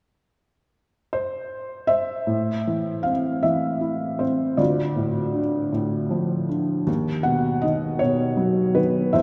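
A wet church reverb with a 3.2-second decay surrounds this short excerpt from a longer classical piece: a melancholic, reflective solo for felt-muted upright piano in a slow, rubato 6/8 at 52 BPM. The piano sits up front, its thin felt giving a soft, mellow, boxy and intimate tone with audible action noise. It enters at 1.1 s and plays through to 9.2 s, spanning D2 to F#5, as the harmony moves from A minor to D minor and then to B over D#.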